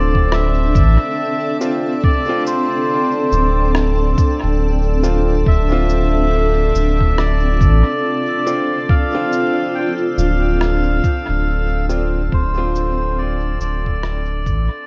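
A deep, round sub bass sits up front beside a muffled, thumpy, pitched-down kick in this hazy, spacious ambient dub excerpt, with a reedy, breathy melodica carrying the melody through dub echo. A cloudy, evolving granular pad holds sustained chords while a woody upright piano, with audible action noise, adds echoed stabs in the background, joined by a faint glassy texture of drifting overtones and a soft, compressed rim click and cabasa. The dreamy mix is soaked in lush hall reverb and fades out from 10.0 seconds.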